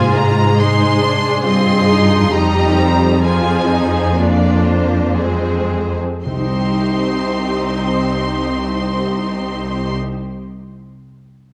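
Moving and bittersweet, this cinematic orchestral excerpt unfolds in a free, rubato 4/4, easing down over its first 6.2 seconds as the harmony shifts from Ab to C minor. Lush, vibrato-rich violins carry a high melody over a smooth second violin line and a clear yet distant viola accompaniment, while the cellos sit up front with a full bowed bass. A very quiet, mellow concert harp rings out thumb-plucked arpeggios to 10.3 seconds, all placed in a dark production with moderate scoring-stage reverb.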